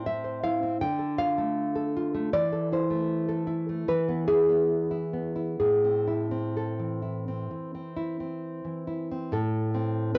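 A home cassette recording places a nylon-string guitar up front in a small, wet room, its dark, full-bodied tone carrying a tape character. This short cut from a longer romantic piece for solo classical guitar sits in A minor with a wistful, intimate mood. The fingerpicked guitar plays alone from 0.0 to 10.2 seconds, spanning A2 to G5 with a deep classical voice. Moving in a rubato 4/4 that drifts between 62 and 80 BPM, the harmony travels from Am through Dm and Am/E to an E chord at 3.9 seconds before settling back on Am. The tuning sits slightly below standard pitch, adding to the worn, personal feel of the recording.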